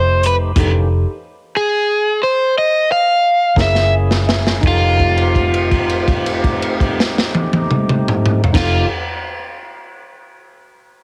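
A bright, overdriven electric guitar carries the melody up front over a mellow dark grand piano in the background, a fat tonewheel organ holding chords through a slow rotary speaker, and a round, foam-muted vintage bass, with a saturated, gritty breakbeat kit of dark cymbals and a tight kick joining at 0.2 s in this gritty, swaggering slow blues cut from a longer piece, which slows down through its first 4.6 seconds as a drum and piano fill at 3.6 s leads into a held note from 4.6 s, all framed by spring reverb and a heavily compressed radio sound.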